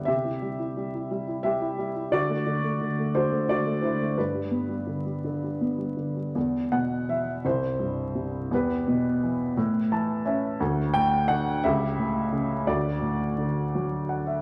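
Vinyl crackle and the lush reverb of a recital hall surround this brief, peaceful passage of lyrical classical solo piano in a rubato 6/8 at about 58 BPM, where an up-front baby grand with a warm tone and long sustain moves from C through D and G before shifting at 6.4 seconds into a second section that drifts through E minor and A, adding a short fill at 9.6 seconds and another near the close at 13.7 seconds.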